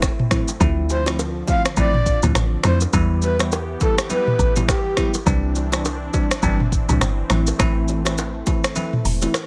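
Smooth and sultry, this afrobeats excerpt rides a swung 4/4 groove, with an up-front electronic kit of deep kick, metallic hats, snaps, rim clicks, shaker and toms, joined by a punchy, woody log drum bass and bright hand-played bongos and congas set back in the mix. A bell-like tine electric piano with phaser and a warbling vintage analog pad under subtle chorus carry chords moving from Am through Dm7, Em and Cadd9 before returning to Am. A soft, breathy flute-like synth lead with vibrato, chorus and delay sings from 0.9 to 5.1 seconds, and the kick drops out at 8.8 seconds.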